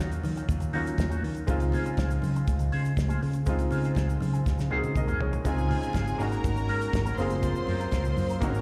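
An up-front, amped electric bass with an envelope filter drives this glamorous disco excerpt alongside a dry, damped 70s drum kit with a tight kick, a clear concert grand piano with a worn, short-sustained tone and slapback echo, a bright, twangy envelope-filtered guitar with wah and spring reverb, bright high-tuned congas and a grainy background shaker, until a drum fill at 4.5 seconds ushers in lush, woody strings holding sustained chords and a biting, intense string line above them from about 5.4 seconds, all heard as a live gig through the venue's PA.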